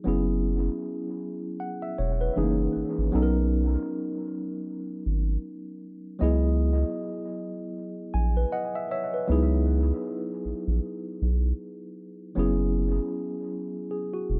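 Sultry and soulful, this neo-soul R&B excerpt rides a swung sixteenth-note feel as a worn, slightly out-of-tune tine electric piano voices lush chords such as F#9sus4, Bmaj9 and C#m11, its clean tone colored by analog delay and a boxy, built-in-speaker quality. A deep, round analog bass sits up front beneath it with a dark, nasal sustain and quick attack. The electric piano slips in a short fill from 7.7 to 9.3 seconds before the opening passage returns, all in a dry, echo-heavy mix with little reverb.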